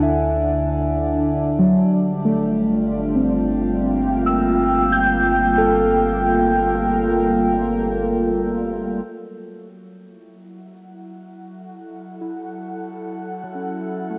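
A home cassette recording bathed in wet spring reverb gives this short ambient fragment, cut from a longer piece, a hazy, lo-fi intimacy. At a slow 67 BPM in straight 4/4, the mood is peaceful and serene, opening on D before settling into Gm7. An airy, breathy pad holds sustained chords up front, its detuned sawtooth and triangle tones blended with a noise layer and a moving notch, softened by slow attacks, long releases, chorus and a cassette tint. Muted, felt-like synth keys play arpeggios alongside it, sounding dark and close with fast, decaying notes, chorus, tape colour and analog delay. A round sine sub bass adds a deep, warm foundation until about 9.0 seconds. The harmony then moves to F#m7 at 9.1 seconds, where the pad and keys carry on together to the end at 14.2 seconds.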